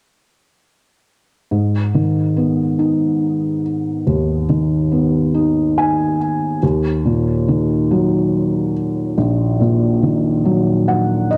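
A felt-muted upright piano plays alone from 1.5 seconds in this melancholic, dramatic pop fragment in a straight 6/8, its soft, dark, thick-felt tone sitting up front with audible action noise and a vintage cassette-tape and analog-delay character in a small room, moving from G#m to D#m at 6.6 seconds with brief fills before it stops at 11.4 seconds.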